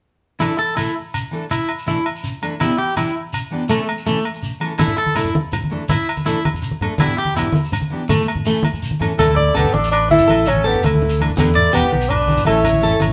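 Recorded live in one room with a moderate stone-room reverb, this danceable highlife guitar band excerpt moves at 109 BPM in a straight 12/8 over Dsus2, Em7 and A chords. A woody, full-bodied picked acoustic guitar and a twangy, slightly broken-up electric guitar playing arpeggios with a warbly pitch drift open alongside ringing, dry agogo bells and a grainy, vintage-sounding shekere, with thick-skinned, low-tuned congas joining at 4.8 seconds. At 9.2 seconds a breathy tenor saxophone with scooped notes carries the jazz-style melody up front, while a bright trumpet plays a second line in the background and a dark, round fingered electric bass sits underneath.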